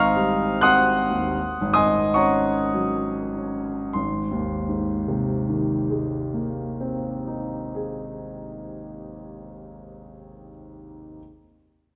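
In a rubato 3/4 that slows over the opening 3.9 seconds and moves at roughly 31-45 BPM, this serene, hazy impressionist classical excerpt in Ab major (tuned to A4 = 439 Hz) features a warm, up-front concert grand piano playing solo from Ab1 to Gb6, its deep bass and long sustain spreading through a wet recital-hall reverb as it drifts from Abmaj7 to Gb/Ab and then settles on Abadd9 at 3.9 seconds, with nothing above 8 kHz.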